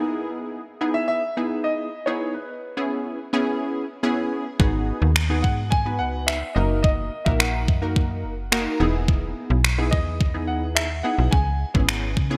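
A straight 4/4 dance-pop groove at 107 BPM drives this energetic, confident excerpt, opening on a punchy, funky polysynth comp of detuned sawtooth and wave-folded tones with a filter pluck, chorus and sidechain pumping, joined at 0.9 seconds by a grand piano melody drenched in lush chorus and delay. At 4.6 seconds a snappy, slap-like FM bass with a metallic attack, also sidechain-pumped, arrives alongside a clean 12-bit drum machine whose thumpy, overdriven kick and finger snaps sound re-recorded in a large room. Over a progression moving from Emaj7 through C#m7, G#m7 and D#m/F#, the bright 1980s-style digital production sits in light reverb, with the drums, bass and comp placed up front.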